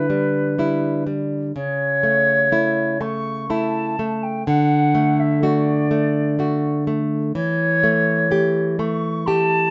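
A fingerpicked nylon-string guitar, full-bodied with fresh strings, sits up front from the first moment, while a silver concert flute sings an expressive, lyrical melody above it with a pure tone, vibrato and a crisp attack, heard from a more distant place. This romantic duo moves in a flexible, rubato triple metre, with the harmony passing from Em7/D through A/C# and D to A7/E in a brief passage cut from a longer piece. The two play live together in one room, wrapped in a moderate studio reverb and a warm, mellow top end.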